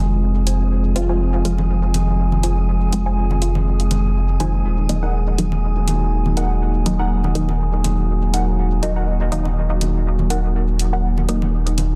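Meditative and nocturnal, this dub techno excerpt moves at 122 BPM in 4/4 with a light 16th-note swing, shifting from F minor to E-flat minor at 4.6 seconds. A deep, clean sine sub bass sits up front beneath a warbling, nostalgic tape-like pad whose detuned, lo-fi chords bloom slowly and linger in chorus and built-in reverb. An eerie, metallic FM drone hovers further back, its inharmonic tone also washed in chorus and reverb. Two filtered dub chord stabs, both muted and sawtooth-based with phaser and dub echo, punctuate the groove: a full-bodied upper riff arriving at 0.5 seconds and a detuned, recessed lower stab joining at 1.0 seconds. An overdriven electronic hi-hat and layered, produced congas tucked in the background, the latter trailing dub echo, fill out the rhythm. Light digital ambience surrounds a dense, heavily limited modern master.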